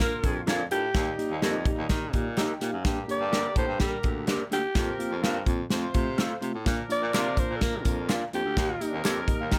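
Joyful and warm, this short excerpt of uptempo 1960s-style soul sets a raspy, gritty alto saxophone melody over a punchy horn section in the background, a reedy electric piano with fast tremolo and brief fills, a breathy baritone saxophone carrying the bass with scooped notes, a punchy up-front country drum kit, dark, slightly broken-up guitar stabs, and tambourine and handclaps joining at 6.7 s, all under light reverb.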